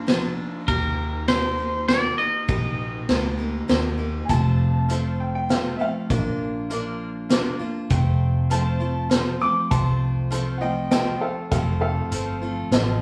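Honky-tonk and classic country in a nostalgic, down-home 3/4 at 100 BPM, in F mixolydian and tuned to A4 = 435 Hz, with a bright, compressed twangy electric guitar carrying the melody until 3.6 seconds over a woody dreadnought acoustic guitar, a round, foam-muted fingered electric bass, and a punchy vintage drum kit with dark cymbals sitting up front. At 4.3 seconds a clear upright piano with a polished, long-sustaining tone takes a solo, and at 4.9 seconds a jangly, metallic tack piano joins the accompaniment. The band plays live together in one small stone room, giving the sound a moderate reverb in this short cut from a longer piece.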